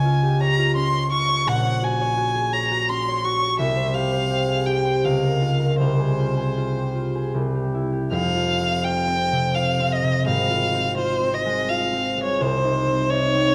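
Yearning and solemn, this romantic classical duo in F minor moves at 84 BPM in a rubato 3/4, with a rich, smooth, even violin singing the melody up front with vibrato over a mellow, ringing concert harp fingerpicking the accompaniment, both bathed in a recital hall's wet reverb, its harmony shifting from Db toward C and then into a second section at 8.1 seconds that settles on Cm in this short cut from a longer piece.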